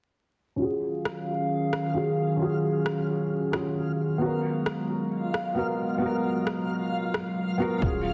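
Future garage at 133 BPM in Eb minor with a ghostly, rainy mood, this short excerpt opens at 0.6 seconds with a muted felt upright piano under a filter sweep, tape echo and sidechain pumping, joined by a warbling, nostalgic tape-like pad on Ebm11 moving to Abm7, an overdriven electronic rim click, a reversed, dreamy swelling texture, and at 7.8 seconds a deep overdriven kick with a round sine sub bass, all set in a recital hall reverb with a heavily compressed radio sound and vinyl crackle.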